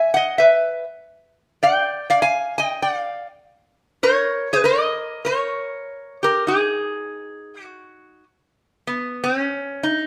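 A metal-body resonator slide guitar carries this Hawaiian excerpt, its bright, nasal, metallic tone sitting up front as it is played with fingerpicks and a slide across a range from B3 to G#5. The mood is dreamy and relaxed, moving at 99 BPM in 4/4 with a gentle swing on the eighth notes. The harmony passes from E5 to Dmadd11 at 1.6 seconds and D#7(no3) at 4.0 seconds, then drops away from chords at 6.4 seconds. A brief new section begins at 8.9 seconds before the cut ends at 10.1 seconds. The acoustic sound carries a moderate stone-room reverb, giving the feel of a band playing live together in one space.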